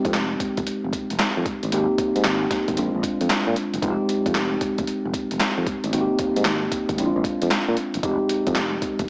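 Swung sixteenths at 114 BPM in 4/4 give this slick, bouncy new jack swing R&B excerpt its bounce in F dorian, with an up-front, gritty, compressed boom bap sampler-style kit of thumpy kick, medium-tuned snare, hi-hat and handclaps in gated reverb, a growly fretless electric bass entering at 0.1 s, and a mellow tine electric piano with lush chorus moving through Fm7, Abmaj7 and Bb7, the whole set in a moderate hall reverb with a small-speaker sound.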